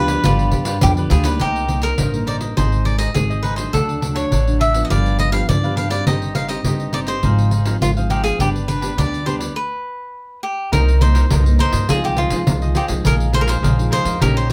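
Recorded live in one room with moderate studio reverb, this lively, nostalgic samba and choro excerpt at 103 BPM in C harmonic minor, settling into C minor at 10.7 s, sets a crisp, up-front picked cavaquinho melody over a second mellow cavaquinho and a thumb-plucked classical nylon-string guitar, with a woody, pizzicato upright bass on steel strings sitting prominently below and a jingly pandeiro entering at 0.1 s, before the band breaks for a stop at 9.6 s.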